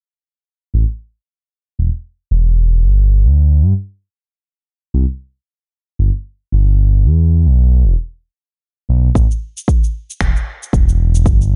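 A dark, dry production opens this mystical, earthy organic downtempo excerpt with swung sixteenths, as a smooth, gliding synth bass enters at 0.7 s, its detuned sawtooth and triangle tones mellow and up front, bending with portamento and vibrato under a filter sweep. At 9.2 s a deep electronic kick drum arrives up front, joined by a faint electronic shaker and finger snaps, and they carry on alongside the bass until the cut.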